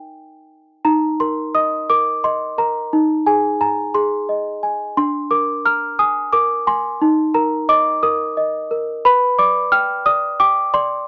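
In a straight 3/4 at 88 BPM, this fragile, wistful classical lullaby, cut from a longer piece, gives a small celesta the whole 11.1 seconds alone, its bell-like, sweet tone struck by hard felt hammers ranging from D4 to F6 and sitting up front with a vintage, band-limited character in a dry, close 1970s-style studio sound as the harmony moves from Eb5 through Ab/Eb and Bb7/D back to Eb5 before settling on G/B.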